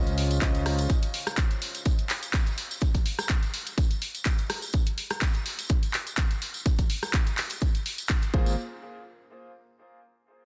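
A lightly swung groove drives this euphoric, joyful piano house clip, where a clear concert grand riff with 12-bit sampler grit, dub echo and sidechain pumping opens alongside a fat, detuned sawtooth analog bass, then drops away at 0.9 seconds as up-front, tape-warm house drums with handclaps, hi-hat and rim click, a close, dry tambourine and a punchy electronic kick from 0.4 seconds carry a dense, heavily limited mix until piano and bass return at 8.3 seconds.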